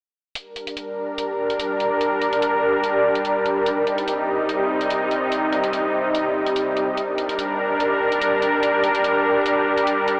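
A half-time 4/4 groove at 145 BPM with a light 54% swing on the sixteenths drives this aggressive, menacing heavy wobble dubstep excerpt in G minor, its metallic, tape-tinged electronic hi-hats sitting low in the mix from 0.4 to 10.2 seconds. Over them, a lush, detuned supersaw pad with a sub octave and slow attack holds up-front sustained chords moving from Gm to Cm and back to Gm, roughened by vintage 12-bit sampler grit and shaped by a low-pass filter sweep until 7.0 seconds, when a build-up takes over. The mix sounds dreamy, drenched in a huge 8.3-second reverb and squeezed through a telephone-like tone.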